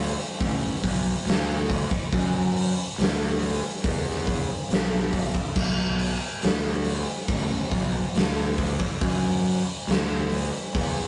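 A rough rehearsal-room recording with tube saturation, a rolled-off top end and a modest small-room reverb frames this brooding, hypnotic stoner and doom metal passage, cut from a longer piece, at 70 BPM in 4/4 and B minor, tuned slightly flat. A growly, overdriven fuzz bass, fingered and amped, opens the sound and holds the low register throughout. At 0.4 seconds a big acoustic rock kit comes in up front, with a punchy kick, a medium-tuned snare, hi-hat and crash ringing in a bright stone room.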